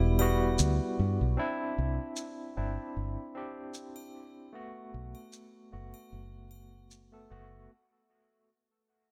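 Dark and cinematic, this 76 BPM trip hop excerpt sways with a 16th-note swing as it fades out across its whole length, moving through Em, Cadd9 and F#madd11. A bright, barky tine electric piano sits up front, colored by tremolo and tape echo, while a fingered electric bass, warm and foam-muted with a direct, amped tone, anchors the low end. Close acoustic triangle and maracas enter at 0.2 seconds and drop away at 7.1 seconds, all within a small room ambience touched by light reverb.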